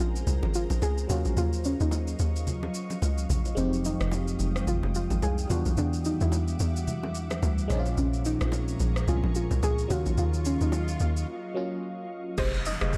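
A swung sixteenth-note amapiano groove rides on an overdriven electronic drum kit with a deep kick, metallic hats, rim clicks, shaker and crash, while congas and bongos sit in the background and a hollow, bouncy log drum bass sits up front, joined at 3.6 seconds by a direct fingered electric bass. A soft, dark, round pluck carries the melody over a biting FM electric piano with phaser and tremolo and an ethereal, evolving pad that pumps beneath minor ninth chords, giving this cut a hypnotic, late-night feel in a dark, warm, lightly reverberant mix. An electronic swell and downlifter enter at 9.7 seconds, a break arrives at 11.3 seconds, and a brief woody, mallet-like synth stab lands at 12.4 seconds.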